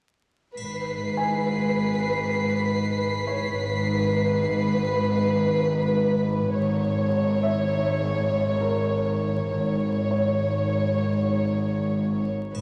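Mysterious and ominous, this suspense film-score fragment moves at 100 BPM in 5/4 in G# minor, with a warm, up-front violin section carrying a sul tasto melody between B4 and C#5 over a dark cello section and a pure, floating double bass section holding G#, while a woody chamber violin section adds a high texture until 6.2 seconds, a brilliant baby grand piano sustains in the background from 1.2 seconds, a dry triangle glints briefly at the start, and a scoring-stage reverb and vinyl crackle surround the whole.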